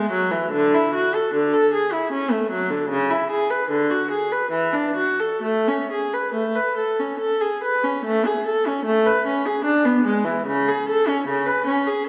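Classical in a baroque style, this is a short cut from a suite movement for unaccompanied viola, radiant and serene in A major. It moves in a gently flexible 3/4, with a tempo that breathes between 61 and 77 BPM under the rubato. A single bowed viola carries everything from 0.0 to 12.1 seconds, ranging from C#3 up to B4, its gut-string tone rich and reedy with a light vibrato in period style. The instrument sits up front yet carries a distant quality, wrapped in the wet reverb of a recital hall with a 1.5-second decay. The production leans dark and warm, and the phrase turns to a new section at 8.0 seconds before the cut ends.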